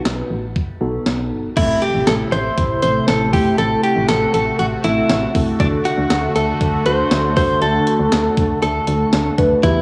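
A straight 4/4 synth-pop groove at 119 BPM opens this melancholic, cool excerpt, with a thumpy, up-front 12-bit drum machine of kick, snare, hi-hat and crash under a punchy, round FM bass and a mellow tine electric piano treated with phaser, shimmer reverb and cassette-tape colour. At 1.6 seconds a compressed, direct-recorded clean electric guitar takes the melody, joined by a swirling, airy analog pad with phaser and chorus, while a very quiet electronic impact sounds from 1.8 seconds. The chords move from B to Am and then D at 5.6 seconds, all set in a moderate spring reverb with the hazy character of a home cassette recording.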